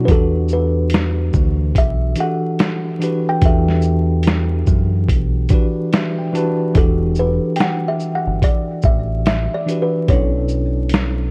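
A gritty, pitched-down boom bap drum kit with a thumpy kick and medium-tuned snare sits up front in this hazy, melancholic lo-fi hip hop excerpt, swung and compressed with a small-room, tape-softened edge. A round, punchy dub bass and a clean, bell-like tine electric piano, filtered through cassette tape, hold down an Em11 mood that turns to Bm11 at 10.1 seconds, while a woody kalimba plucks a short, hollow melody. The electric piano takes a fill from 5.1 to 6.8 seconds, and the whole bed is draped in vinyl crackle and warbling old-tape pitch drift.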